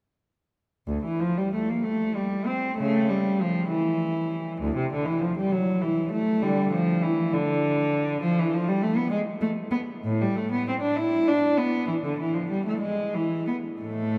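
A deep, wet cathedral reverb with a long 4.7-second decay surrounds a single bowed cello, heard up front yet with a distant glow. In this short excerpt from a baroque-style suite movement in D minor, the solo cello plays from 0.9 to 14.2 seconds in a flowing, introspective 6/8 at a rubato 58-68 BPM by the dotted quarter. Its warm, expressive voice moves between D2 and E4, colored by vibrato and gliding portamento.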